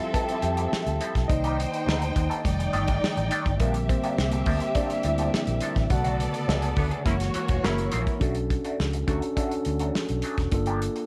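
A straight 4/4 groove at 104 BPM drives this lush, smooth and bittersweet 1970s-style soul excerpt, with an up-front drum kit built on a tight kick and a dark, round, foam-muted fingered bass entering at 0.4 seconds. A mellow, clean tine electric piano takes the solo over the opening eight seconds while bowed strings with expressive vibrato carry a second line, and a slightly broken-up, twangy guitar riff runs through wah and phaser. A band accent arrives at 5.9 seconds, where a tight, jazz-style horn section adds brief stabs from 6.8 to 8.2 seconds, and the harmony moves from a rootless Dm11 through Bm7 and F#7 to Gm7 under light reverb.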